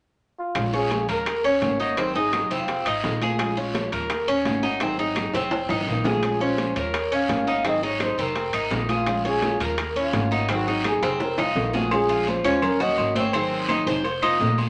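Cuban son in a danceable guajira vein, this warm, cyclic minor-key excerpt sets a veiled, breathy bucket-muted trumpet playing a whispered, jazz-style solo melody with scooped notes, heard from 0.4 to 3.0 seconds and again from 6.1 seconds. Up front, a mellow, metallic Cuban tres picks arpeggios on doubled strings, beside a fingerpicked flamenco guitar and a dark, thumpy pizzicato upright bass. Ringing metal-shell timbales and agogo bells sit close, with drum fills at 5.3 seconds and near the end, alongside soft-handed congas and tight bongos with cowbell in the background, a raspy guiro, and very quiet woody claves, all in a wet studio reverb.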